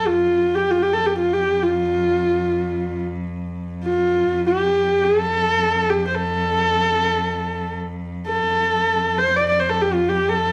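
Flowing in free time, this short excerpt of Mongolian folk music in an F gong mode feels galloping and vast. A clear, husky horsehead fiddle carries the melody up front between F4 and D5, its bowed horsehair strings shaded with vibrato, portamento and a slapback echo, while a biting, nasal cello holds a quieter drone on F2 with an airy bow throughout the 10.5 seconds. The production is dark and warm, set in a moderate studio reverb.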